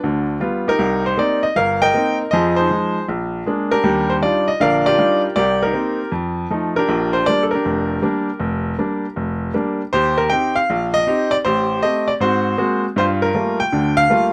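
Solo jazz piano in B-flat major, this short excerpt swings at 158 BPM in 4/4 with a playful, lighthearted mood. A clear baby grand carries everything on its own, ranging from F1 up to G5, and sits up front with an intimate, natural sound in which the audible action noise of the instrument comes through. Close, detailed microphones and light reverb keep the room present but unobtrusive. The harmony moves briskly through turnaround-style changes such as G7, Cm7, Fm7 and Bb7 before settling on an Ebmaj9 and resolving to Bb6. At 9.9 s the piece shifts into a new section, opening on Eb6 and passing through Am7b5 and Ab9 to land on Gm9 as the fragment ends at 14.3 s, cut from a longer performance.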